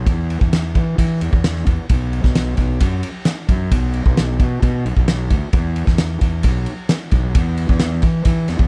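A growly, fuzz-drenched fingered electric bass sits up front in this short math rock and midwest emo fragment, its overdriven tone ranging from B1 to E3 at 132 BPM in a straight 4/4. A loose indie drum kit joins at 0.1 seconds with a punchy kick, a fat snare and dark ride cymbal, recorded in a pumping studio room. The mix is dry and close, giving the 8.7-second passage a wistful yet bright character.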